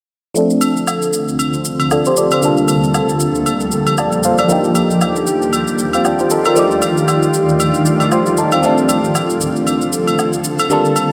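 Amapiano with a hypnotic, late-night mood, where a biting, warbling FM electric piano with phaser sits up front from 0.3 seconds beside a cloudy, detuned granular pad that enters at 1.1 seconds, over a produced electronic shaker and close, dry agogo bells and woodblock, the harmony moving through Dm7, Gm9/D and Ebmaj9 under a filter sweep in a dreamy mix soaked in lush hall reverb.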